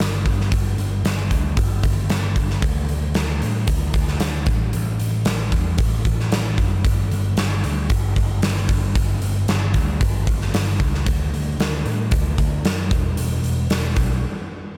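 A growly, bright overdriven picked electric bass and a huge acoustic arena drum kit, with a punchy kick, medium-tuned snare, hi-hat and a pumping room sound placed up front, open this dark, cathartic quiet-loud alternative rock passage at 114 BPM in a straight 4/4, driving together until both cut out for a brief break at 14.2 seconds.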